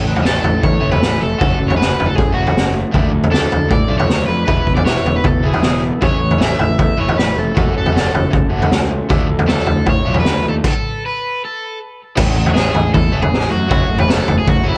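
A twangy, lo-fi guitar through a small old amp opens this upbeat, carefree indie rock excerpt in A major at 156 BPM, alongside a compressed overdriven rhythm guitar and a fuzzy fingered bass sitting in the background, with a raw garage drum kit, up front with a boomy kick and high-tuned snare, and a bright, crunchy lead guitar with analog delay arriving within the first second. The riffs cycle through A, F#m, Dm and Esus4 until a stop at 10.6 s, where the small-amp guitar drops out, before the progression returns at 12.2 s. Light small-room reverb and worn, warbling cassette tape with pitch drift give the whole recording a loose, homemade feel.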